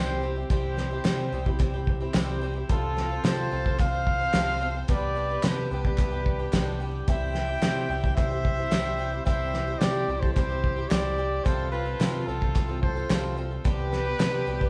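Indie folk in C major at 110 BPM with a warm, nostalgic mood, cut from a longer piece: a mellow trumpet with light vibrato carries the melody, a rich, focused bowed fiddle plays a second line, and a bright, shimmering twelve-string acoustic guitar picks octave-doubled accompaniment over a dark, round, punchy electric bass. A cloth-damped, thuddy drum kit with a fat snare and rolled-off top enters at 0.5 seconds, joined at 1.0 seconds by very quiet crisp handclaps and a jingly, vintage tambourine. The band plays live in one large studio room with moderate reverb and a layer of vinyl crackle, while the chords move between C, F over C and G over C.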